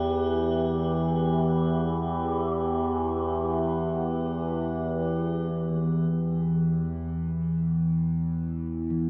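This dark ambient drone piece in E minor unfolds in free time, and its mood is dark and desolate. Up front, a resonant, overtone-sweeping synth drone blending sawtooth and sine tones sustains in the low register, its moving overtones coloured by chorus, phaser and built-in reverb. Above it, an eerie, inharmonic FM drone with a metallic edge hovers quietly with chorus and reverb until it stops at 5.5 seconds, where the harmony drops away from E minor and a filter sweep begins on the synth drone. At 8.9 seconds a close-miked, dry gamelan-type bronze metallophone struck with padded disc mallets adds a brief, mellow, ringing arpeggio. A cathedral reverb with a long 5.8-second tail, and the warble and pitch drift of worn cassette tape, give the recording a hazy, aged character, and this fragment is cut from a longer piece.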